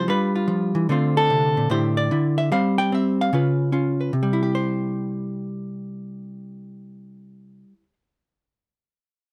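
A clean, dark-toned electric hollow-body jazz guitar plays solo and up front, picking through a relaxed, warm swing passage in C major at 148 BPM in 4/4, spanning A2 to G5. The harmony moves from G7 through Dm7, A7sus4, Gsus4 and Db7 before resolving to C at 4.1 seconds, where a second section begins and runs to about 7.4 seconds. Close, detailed microphones and little reverb keep the sound dry and intimate in this short cut from a longer piece.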